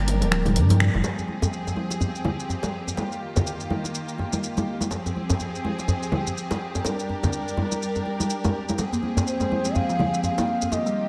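Driving and hypnotic, this afro house excerpt rides a swung groove under a bed of clear, smooth symphonic strings that hold sustained chords throughout with light vibrato. The opening second is busy: a woody, hollow kalimba plucks mellow arpeggios through delay, a round, sine-like sub bass sits deep and up front with tube saturation, and a layered, tape-toned deep house kit of finger snaps, hi-hat and toms plays a fill punctuated by a band accent. From 1.0 seconds the kit and bass drop away, leaving soft-handed acoustic djembe and ringing, medium-tuned congas to carry the pulse alongside grainy, close and dry maracas. The kalimba returns at 8.9 seconds, and at 9.3 seconds an airy, reedy bansuri enters up high, close-miked with vibrato, a soft attack, vintage 12-bit sampler grit and delay. A light reverb sets the whole piece in a gentle space as the chords move between minor and major colors.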